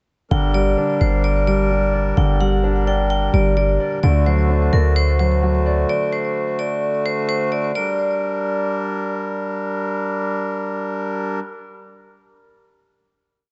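A dreamy, reverb-soaked mix with the highs rolled off frames this brooding, melancholic half-time trap piece, a complete short work that moves from a breakdown into a held final chord. A metallic, ringing vibraphone with slow motor vibrato and delay repeats a looping melody like a sample, over a dark concert grand piano's patterned eighth-note arpeggio and a reedy, breathing harmonium pad sitting up front. A punchy, heavy 808 bass delivers long sub-bass notes until 5.9 seconds, and after the piano drops out at 6.8 seconds the harmonium sustains the closing chord until 11.4 seconds.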